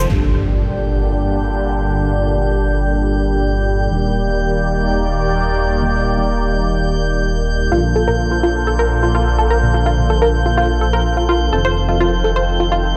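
House in G minor at 126 BPM, this expansive, dreamy section of a longer piece moves through Gm, Ebmaj7, Bbmaj7 and F7 over a deep, rumbling detuned saw bass with tube saturation, and an evolving, up-front filtered supersaw swell holding sustained chords. An electronic impact hits at 0.1 s, and a calm, glassy texture of drifting overtones, with chorus and its own reverb, enters at 0.8 s. A very quiet, soft chord stab sits beneath, and a tight, driving sequenced synth with chorus and tape echo returns with arpeggios at 7.7 s, all in a light reverb.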